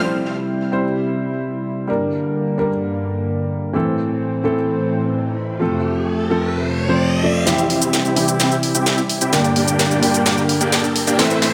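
Uplifting and anthemic, this festival progressive house excerpt at 129 BPM opens with a dark, mellow grand piano carrying audible action noise and a digital delay, set over a lush, airy unison pad with chorus that moves through C, Gm, Am and F while a filter sweeps across it. An electronic riser enters at 5.1 seconds, and at 7.5 seconds the build-up arrives with a huge, detuned supersaw riff under a sweeping low-pass filter and delay, plus a layered house drum kit whose cracking snare, cabasa and warm hi-hats play a fill. A moderate hall reverb gives the mix a roomy ambience.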